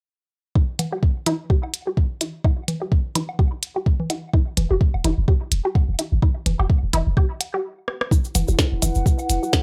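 Sparse and clinical, this minimal techno excerpt moves at 127 BPM in 4/4 with a light 16th-note swing, sitting on E minor. A squelchy, resonant blip pluck carries the riff from 0.6 seconds, its bright sawtooth tone coloured by a phaser, analog delay and sidechain pumping while a filter sweep runs across it. Underneath, a soft, tape-touched electronic kick sits up front with a minimal click kit of tiny snare, rim click and clicky hi-hats, both in a small room, joined by overdriven, layered congas and woodblock with their own delay. A deep, punchy sine sub bass with a pitch-drop attack enters at 4.6 seconds and pumps against the kick, and after a brief stop and a drum fill near 7.9 seconds, a grainy acoustic cabasa arrives at 8.1 seconds. A warbling, nostalgic lo-fi pad with chorus, a slow attack and a dark, long-releasing tail slips in at 8.4 seconds, all within a dry, gritty hardware sound.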